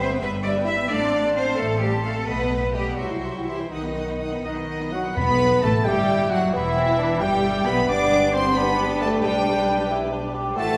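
Restless and urgent, this brief cut from a longer romantic orchestral movement in E minor moves in a fast 6/8 at 80-92 BPM counted in dotted quarters, with a pliant rubato feel. Lush, vibrato-rich violins carry the melody high above a second violin line that sits rich and focused in the background, while smooth violas and a mellow, roomy French horn section hold the inner harmony and sustained chords. Below them, a bright, intense cello section and a clear, close double bass section anchor the bass. Woodwinds join partway through, with a warm, smooth oboe entering at 4.4 s, followed at 4.5 s by a clear clarinet in the background, and a roomy bassoon adds accompaniment from 5.9 s. A brief, articulate burst of hard-mallet timpani from 5.2 to 5.8 s marks the turn into the second section, where the harmony settles from E minor toward G. The whole ensemble sits in a reverberant recital hall that lends the sound a spacious, resonant glow.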